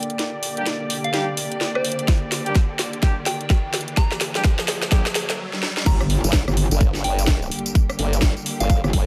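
Swaggering, gritty bass house builds over veiled, muted chamber strings, an overdriven garage drum kit with a cracking snare, background horn stabs, a pure, soft synth bell melody with phaser and tape echo, and a riser and impact, as a tight electronic kick arrives at 2.1 seconds and the drums stop briefly before the drop at 5.9 seconds, where a distorted, metallic wobble bass and a bright formant-sweep wobble bass enter up front, both pumping with sidechain.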